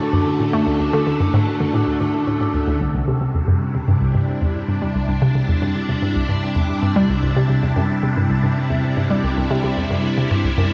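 Expansive and luminous, this ambient, sequencer-driven space music fragment sets a bouncy, detuned square pluck riff up front against swirling phased string-machine chords, with dark vibraphone arpeggios ringing through analog delay in the background and a breathy, wind-like tuned noise texture that ends at 2.8 s as the harmony moves from D to Cmaj7, all bathed in a wet, echo-heavy spring reverb.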